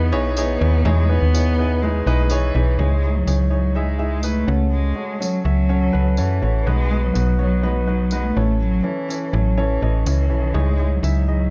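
A snappy, metallic FM slap bass sits up front in this earnest, dramatic slice of piano-driven pop in C# minor, moving at 124 BPM in a straight 4/4 and tuned to A4 = 439 Hz. A distant solo cello carries the melody with vibrato and portamento over an intimate concert grand whose deep bass, long sustain and audible action noise fill out chords moving from Emaj7 through C#madd9, F#m/C#, B and A. A jingly, close and dry tambourine joins at 0.4 s, all within a dark, warm production with light reverb.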